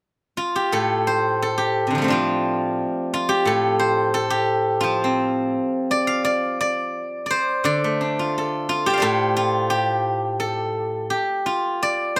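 A solo steel-string zither, played with fingerpicks, rings out up front from 0.4 to 12.2 seconds with a bright, silvery voice across a range from A2 to A5. It is a passage of elegant, longing Chinese traditional music in the A jue mode, flowing in a rubato 2/4 around 86 BPM, tuned to A4 = 442 Hz and cut from a longer piece, with close, detailed miking and a light reverb.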